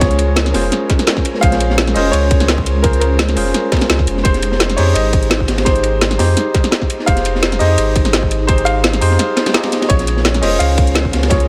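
Liquid drum and bass, melancholic and dreamy, cut from a longer piece, where an intimate grand piano with audible action noise carries the melody through digital delay over a bright tine electric piano with 12-bit sampler grit, a faint, warbling, detuned pad, a round sine sub bass sitting up front, and layered drums that blend a tight electronic kick, a woody-snared kit with metallic hats, and a saturated, high-passed breakbeat kit with dark cymbals, all in a small, lightly reverberant room over Bbm7 and Fm9 chords.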